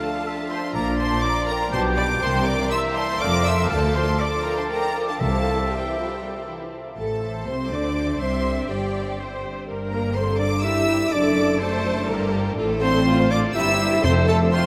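A vast, echoing reverb washes over this graceful, cheerful excerpt from a quick classical-period orchestral movement in 3/4 at 123 BPM, played with a rubato feel as rich, close violins carry the melody above lush violas, a clear second violin line in the background, mellow flutes and a dark, distant horn section holding sustained chords. A vintage-toned oboe adds a second line until 6.5 s, a bright solo clarinet takes up its own line from 7.0 s, and focused cellos and double basses anchor the bass from 0.7 s. Round, soft-mallet timpani sound briefly in the background, once near the midpoint and again at the close, as the harmony moves from D minor through G minor toward a closing Dm/F.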